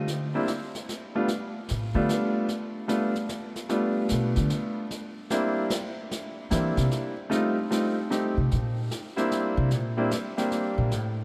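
Drenched in a vast, echoing cathedral reverb, this playful, swinging jazz piano trio passage in C major moves at 150 BPM in a swung 3/4, with a woody, thumpy pizzicato upright bass up front taking the solo spotlight in bursts from 0.0, 4.1 and 6.5 seconds, a clear, intimate baby grand piano with audible action noise carrying the melody until 10.9 seconds, and a medium-tuned snare played with brushes sitting lower in the mix beneath chords such as G9, C9 and F9.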